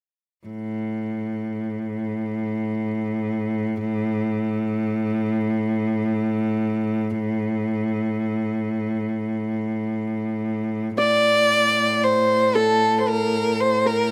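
Unfolding in free time in A makam kurdi, this soulful, longing Turkish makam ensemble excerpt opens with a bright, biting bowed-cello drone on A2 held up front with vibrato from 0.5 seconds, before a rich, focused bowed violin melody and a ringing, fingerpicked Celtic harp second line in the background both enter at 11.0 seconds, all set in light reverb with close, detailed microphones.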